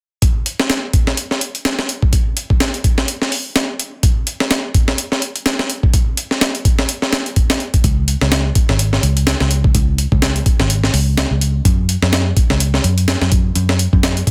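Swung sixteenths drive this energetic, funky breakbeat cut from a longer piece, where a gritty, compressed sampler-style drum kit with a thumpy kick, high-tuned snare and hi-hat sits up front in studio reverb before a dark, round, foam-muted picked electric bass joins at 7.8 seconds, all set in a digital ambience with a dense, heavily limited modern master.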